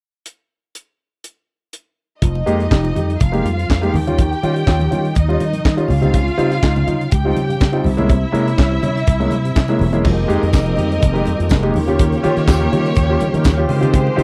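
A tight, up-front funk drum kit with a high-tuned snare, kick, hi-hat, handclaps and crash cymbal opens this driving, sultry disco excerpt alone before, at 2.2 seconds, a growly, punchy slap bass through an envelope filter, an intimate concert grand piano with audible action noise, a smooth, bowed studio string section with vibrato and very quiet, hard-handed congas join in, followed at 10.0 seconds by a lightly overdriven tonewheel organ with chorus vibrato and slow rotary speaker in the background and, shortly after, a jingly tambourine, in a dry, close 1970s-style studio sound.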